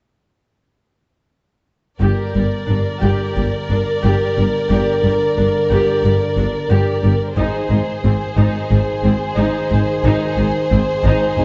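Cinematic orchestral music at 90 BPM in G Phrygian, dark and heroic, building from 2.0 seconds as the chords move from G minor to A-flat at 7.4 seconds in this fragment of a longer piece. Two lush, vibrato-laden violin lines carry the melody and a second line above a focused, distant viola accompaniment, while a punchy French horn section holds sustained chords and intense cellos in the background join rich double basses on the bass. A moderate scoring-stage reverb and a dark production give the orchestra a warm, rounded glow.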